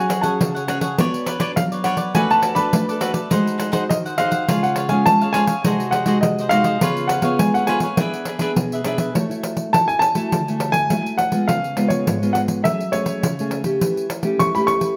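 The recording sits in a moderate studio room, with the piano, guitar and pandeiro placed up front. This lively, joyful passage of samba and choro, cut from a longer piece, moves in a straight four-beat feel. A warm baby grand piano carries the melody in its upper register; it sounds intimate and natural, with audible action noise and a short sustain, and it is dressed in plate reverb and tape echo. Underneath, a fingerpicked nylon-string guitar with fresh strings gives classical-toned accompaniment, while a crisp, picked cavaquinho adds its own accompaniment until 9.1 s. The pandeiro enters at 0.1 s, jingly, close and dry, played with soft hands, and the music opens into a second section at 9.2 s.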